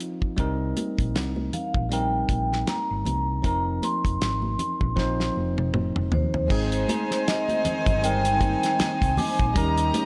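A bell-like tine electric piano and a damped, dry 70s drum kit open this smooth, cinematic passage of lush 1970s-style soul, soon joined by a round hollow-body fingered bass and high-tuned congas in the background, before a ringing vibraphone takes the melody at 1.5 s and, after a drum fill, a floating violin section with tape echo and a dark, woody string section holding sustained chords arrive at 6.5 s, with a very quiet glockenspiel adding texture over a swung, small-room feel.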